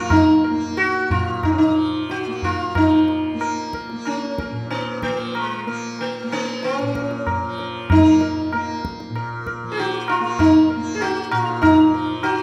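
Meditative and introspective, this short Hindustani classical passage is cut from a longer piece and set in raga bhairavi, moving in a straight four-beat metre that gradually speeds up across its 12.4 seconds. The sitar carries the melody up front, its plectrum-plucked tone mellow and buzzing, with sympathetic strings adding a shimmering halo. Beneath it, the tanpura holds a softly plucked drone, sitting lower in the mix with a warm, buzzing, shimmering resonance. The tabla enters at 0.1 seconds with a high-tuned, short-ringing sound that stays close and dry against the rest. The sitar and tanpura sit in a reverberant recital hall, and after a brief opening passage the music shifts into a new section at 2.8 seconds.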